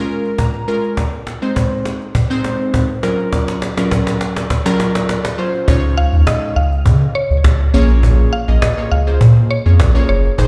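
A straight 4/4 groove at 102 BPM carries this summery, euphoric dance-pop piece in Db major, where snappy acoustic cajon and glassy, mellow digital keys with chorus open a build-up over Bbm7, Ab and Gbmaj7, before a round, deep analog bass with a filter sweep arrives at the drop at 5.7 seconds on Dbadd9, joined at 6.0 seconds by a woody, mallet-like synth pluck melody washed in chorus and tape echo, all set in a bare room with large studio reverb.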